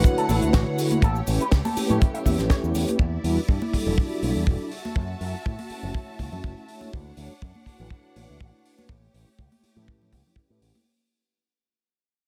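A mellow, round synth brass with chorus, dub echo and a filter sweep opens this sensual, sleek nu-disco excerpt at 122 BPM. It arrives alongside rich, bowed studio strings, an up-front tight acoustic kick, a small-room funk kit with a high-tuned snare and hi-hat, and background cabasa, congas and bongos, with sidechain pumping on the brass and strings. A bright, picked electric bass with an envelope filter enters at 0.3 s, and a clean, fingered electric guitar, also through an envelope filter with lush chorus and dub echo, plays a brief riff until 2.5 s, as the chords move through Dmaj7, A7, Em7 and F#m7 with a light sixteenth-note swing in a studio reverb while the passage fades out.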